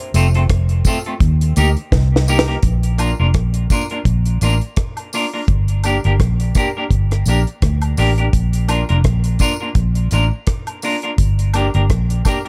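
A round, foam-muted vintage fingered bass sits up front in this laid-back, uplifting roots reggae excerpt in Bb major at 84 BPM, with a gentle 16th-note swing. A dry, dark acoustic kit with a tight kick and high-tuned snare plays a fill from 1.9 to 2.6 s, where the harmony moves from F and Eb to Bb and Gm. A bright, clean picked electric guitar carries dub echo, while a close tambourine and woodblock part sits low in the small room.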